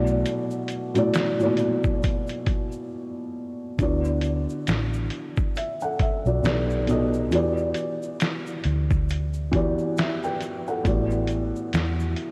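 A felt-muted upright piano sits up front in this cosy, dreamy lo-fi hip hop fragment, its boxy, intimate tone softened further by cassette tape and a low-pass filter, with the soft clatter of its action audible. Beneath it, a vintage fingered electric bass plays a round, foam-muted line in a low register, while a sampler-style soul drum kit adds a gritty, overdriven edge with a thumpy kick, a medium-tuned snare and hi-hat, all compressed and placed close to the listener. An egg shaker adds a grainy, bright texture in the background. The groove swings gently in four, with a break running from 0.3 to 3.8 seconds before the harmony moves through lush extended chords such as D69, B7alt and Em9, settling on A13sus4 at 10.9 seconds. The whole mix is soaked in a lush hall reverb and cassette tape coloring, giving the piece a hazy, nostalgic atmosphere.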